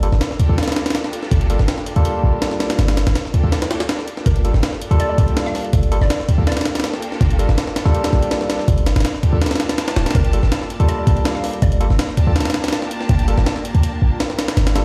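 A deep, boomy 808-style bass sits up front in this atmospheric, raw drum and bass cut at 163 BPM in G minor. Its sine tone carries a noise layer, with a fast attack and a mellow decay. Beside it, a compressed, pitched-up breakbeat kit brings a thumpy kick, a medium-tuned snare and hi-hats, gritty and tape-warm from being re-recorded in a small room. A bright, barky tine electric piano plays lightly overdriven stabs through a combo amp over a Gm9 chord, roughened by 12-bit sampler grit, a low-pass filter and dub echo. From 0.4 seconds a distant, lush string section holds bowed chords with vibrato, while a hollow, detuned square pluck sings a bouncy melody in the background through chorus and dub echo, surfacing in short bursts such as at 4.3 seconds. A very quiet reversed, dreamy triangle texture with a granular grain enters at 10.7 seconds, and the piece sounds as if it is played on a big sound system in a bare room with large studio reverb.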